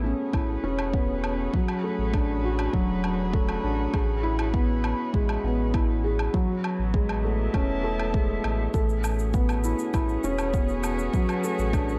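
A deep, overdriven electronic kick enters up front at 0.3 s alongside a gritty woodblock and shaker, driving a hopeful, luminous piano-and-strings electronica build-up at 100 BPM in 4/4, where a soft felt-muted upright piano plays an intimate riff with audible action noise and digital delay, a round sine sub bass and a veiled con sordino string quartet pump with sidechain on sustained chords moving from Aadd9 through D/A, E/A and F#madd9 to D, all in a dark production with light reverb, cut from a longer piece.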